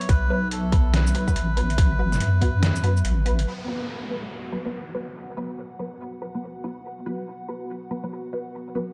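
Dark and cavernous, this deep dubstep excerpt at 142 BPM moves in a swung half-time 4/4, opening with a reedy, breathy melodica line drenched in dub echo over a moody, wave-folded analog pad, a muffled, overdriven sampler-style kit of hi-hat, shaker and snare, a tight, up-front electronic kick and a deep, wobbling triangle-and-sine bass. The kick falls away at 2.5 seconds and the kit and bass at 3.5 seconds, leaving the pad, muted phaser-treated dub chord stabs and an electronic downlifter to carry the lightly reverberant, shadowy space.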